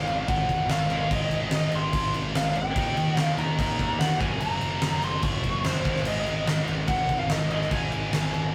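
A straight 4/4 hard rock groove at 145 BPM drives this powerful, swaggering excerpt in Ab mixolydian, with a huge arena drum kit up front, pounding a punchy kick, fat snare and bright crash cymbals through the whole passage. A scooped, double-tracked high-gain guitar picks out the riff over a punchy fuzz bass, while a dark, lo-fi lead guitar through a small cranked amp carries the melody up to Db6 across a cycle of Ab5, Eb and Gb chords. It sounds like a rough rehearsal room with light reverb and saturated grit.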